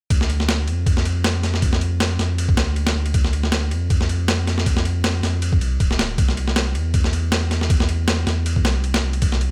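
Drum and bass with a jungle edge, this raw, nostalgic excerpt is cut from a longer piece and runs on a lightly swung 16th-note feel. A gritty, compressed breakbeat kit sits up front from 0.1 to 9.5 seconds, its thumpy kick, medium-tuned snare and ride cymbal carrying a tape-warm, sampler-style character. Beneath it, a deep, thick saturated sub bass with a triangle tone, fast attack and sustained notes plays across the same span, all set in a digital ambience.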